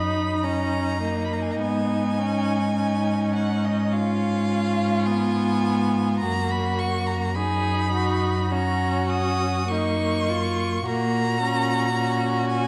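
A string quartet opens together on an F# chord, all four bowed players sounding from the start in a slow, serene romantic movement with a flexible, rubato feel. The first violin carries the melody high above the group with a soft attack, expressive portamento and vibrato, sitting close to the listener with a gentle glow. Beneath it the second violin's full-bodied middle line also slides expressively between notes, while the viola supplies a smooth, even accompaniment with a rounded top. The cello, rich and up front, anchors the bass, and every player colours the sound with vibrato. The harmony moves from F# to C#7/G# at 1.6 seconds, back to F# at 6.2 seconds, and settles on F#/A# at 10.9 seconds, all bathed in a generous scoring-stage reverb with a 1.6-second tail and a dark, mellow production. This brief passage is cut from a longer piece.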